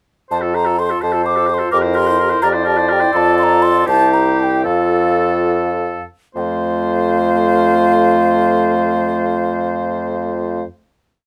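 A mellow, hollow wooden flute carries the graceful, cheerful tune with an airy, tongued vibrato and lifted highs in this short, complete classical-period movement for wind quintet in F major, a quick 6/8 at 67-86 BPM with a rubato feel. A roomy oboe with light vibrato and a soft attack, and a warm French horn with vibrato, rock between two notes and shape chords in the rhythm of the tune, while an up-front, clear bassoon marks the bass on the beats. A vintage-toned clarinet enters at 1.0 s with a counter-melody; the music slows from 2.4 s, and at 6.4 s the quintet settles into a sustained final chord under close, detailed microphones and light reverb.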